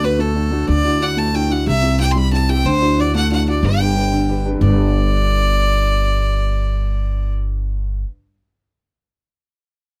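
Celtic folk jig in G major, cheerful and bright, moving at 122 BPM in a straight 6/8 lilt. A single bowed fiddle carries the melody up front from A4 to C6, its tone clear and nasal with an airy bow and an earthy edge. An upright piano accompanies with a woody, boxy sound across its lower and middle register, and a pizzicato upright bass on steel strings sits up front, growly yet bright, in the low range from G1 to D2. The harmony moves from D through Dadd9 and C before settling on G around 3.6 seconds, with a short contrasting passage beginning at 4.6 seconds. The fiddle drops out at 7.3 seconds, leaving bass and piano to ring briefly in a light reverb in this snippet cut from a longer piece.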